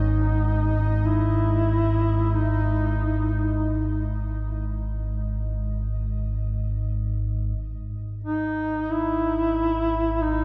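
Cavernous and ominous, this dark ambient drone is cut from a longer piece and steeped in a cathedral-like reverb with a 5.0-second tail. A deep, rumbling drone sits up front throughout, its detuned triangle and sawtooth layers wave-folded, slow to rise and long to release, with its own built-in reverb adding to the gloom. Also up front, a solo duduk plays in a mellow folk style, hovering between D#4 and E4 with vibrato and scooped notes, sounding distant and roomy as a delay trails each phrase. Tucked in the background, a bright, bubbling sawtooth texture with resonant random filter steps, chorus and built-in reverb gradually fades out over a G#5 chord until it stops at 7.6 seconds. From there the harmony falls away, leaving the drone and duduk alone until the end at 10.4 seconds.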